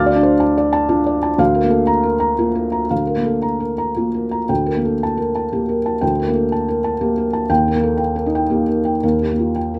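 Wistful and reflective, this short neoclassical minimalist piano excerpt in G minor moves in a rubato 3/4 at roughly 111-123 BPM, with the tuning sitting at A4 = 441 Hz. A felt-muted upright piano plays alone throughout, its thick felt giving a soft, dark, intimate tone with audible action noise, placed up front in light reverb and spanning D2 to A6. The harmony drifts from Dm through Bb/D and Gmadd9/D before settling on Eb at 7.5 seconds, as the fragment breaks off mid-piece.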